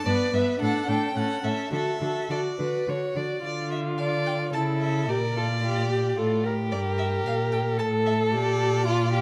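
A spirited classical-period string quartet excerpt in quick 3/4 at 110 BPM with a rubato feel opens in D major on a distant, focused first violin singing the melody over a smooth, even second violin up front and a dark, close viola whose expressive accompaniment slides with portamento, joined at 0.1 s by a rich, up-front cello bass with a smooth top, all bowed with vibrato before the music turns to D minor at 3.4 s, wrapped in a moderate scoring-stage reverb.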